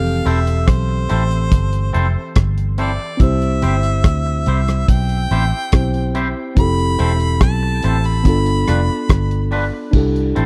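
Tender and smooth, this lovers rock reggae passage in C major moves at 71 BPM with a dry, close 1970s-style studio sound, cut from a longer piece. A bright harmonica with light vibrato and tape echo carries the melody until 9.5 s, above a worn, slightly out-of-tune tine electric piano and a round, punchy, foam-muted bass sitting up front. A damped 70s drum kit with dark cymbals, tight kick and rim clicks anchors the groove, while a twangy electric guitar bathed in spring reverb adds clean stabs from 0.3 s as the chords move from Fmaj7 to C, back to Fmaj7, then G7, settling on C6.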